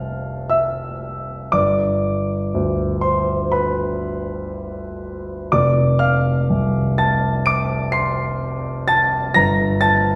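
Bathed in the wet reverb of a recital hall and heard from further back in the room, this dreamy, luminous fragment of impressionist classical solo piano unfolds in a rubato 4/4 at around 58-65 BPM, its polished, present grand piano ranging from F1 to D7 over drifting Fmaj9, G, F6 and Gmadd9 harmonies for about 10.2 seconds.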